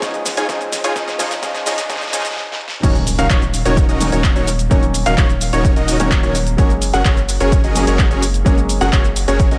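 Festival progressive house, emotional and euphoric: a thick, detuned supersaw riff and a soft, felt-muted upright piano, both pumping with sidechain and dub echo, ride over a punchy, up-front kick, a big-room kit with a huge snare, handclaps, hi-hat, shaker and crash, and a very quiet riser, until a drop at 2.8 seconds brings an impact, worn baby grand arpeggios in the background and a deep, saturated sub bass, all in a dry mix.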